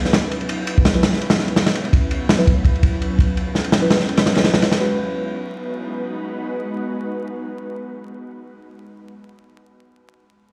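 This dark, atmospheric drum and bass excerpt in G# minor at 167 BPM opens on an ethereal, airy pad whose detuned sawtooth voices fade in slowly and hold sustained chords, softened by ensemble chorus and its own reverb. A crunchy breakbeat kit of kick, snare and ride joins almost at once, sitting up front with a gritty, saturated character, a tight kick, dark cymbals and a rolled-off top. From 0.9 seconds, a deep, mellow chord stab sits in the background, its soft, warbling, vintage tone shaped by a filter sweep, chorus and dub echo. The harmony rests on F#7sus4 before moving to G#m7 at 4.8 seconds, where the drums drop out and the pad and stabs carry on alone. The whole recording sounds as if played on a big sound system in a bare stone room, with a lush hall reverb and a layer of vinyl crackle.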